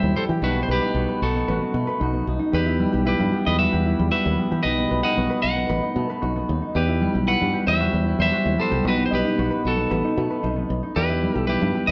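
Danceable and bittersweet, this highlife fragment moves at 114 BPM in a straight 4/4 in E harmonic minor, rocking between B7 and Emadd9 before settling on Em. A bright, twangy picked electric guitar carries the melody up front. Underneath, a second clean guitar, compressed and scooped with spring reverb, plays accompaniment in the background, while a concert harp adds ringing thumb-plucked arpeggios and a dark, round, foam-muted fingered bass holds the low end. All four parts play together for the full 11.9 seconds, captured as a band in one room with moderate studio reverb and a mellow top end.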